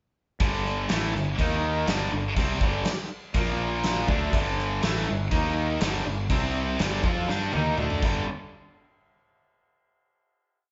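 Hard rock with an aggressive, driving edge, built on a power-chord riff from a distorted high-gain guitar and a bright overdriven electric guitar, with a growly fuzz bass doubling the riff in driving eighth notes. A gated 80s drum kit sits up front with a fat snare, tight kick and bright cymbals, and a drum fill at 7.3 seconds leads into a final hit at 8.3 seconds. The band plays live in one large studio room with moderate reverb and a dark top end.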